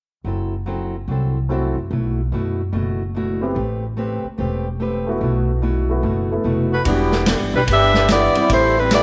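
Sultry and swinging, this big band swing excerpt opens on a dark, boxy fingerpicked parlour guitar, its finger squeak audible, alongside a woody pizzicato upright bass that sits up front. A clear baby grand piano with short sustain joins at 1.5 seconds, adding accompaniment over a moody progression that moves from F#m7b5 through B7sus4 and Am9. At 6.7 seconds a mellow saxophone section takes the melody, loose and full of vibrato with a smooth top and a slapback echo, standing out as the loudest part. A vintage drum kit with a punchy kick, a medium-tuned snare, hi-hat and ride cymbal enters at 6.9 seconds, its acoustic, natural small-room sound arriving as the harmony settles onto Em7. Light studio reverb surrounds the ensemble, and lossy compression artefacts can be heard.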